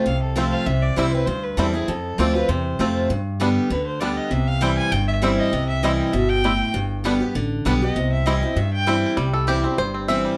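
A boxy, up-front parlour steel-string guitar, finger squeak and all, drives this lively, rustic bluegrass excerpt at 197 BPM in C major with a swung feel. It is joined by a growly, woody pizzicato upright bass, a nasal, reedy bowed fiddle carrying the melody until 9.1 s, and a twangy, percussive fingerpicked banjo that, like the fiddle, has plate reverb and takes a solo from 9.2 s, all in a moderate studio ambience.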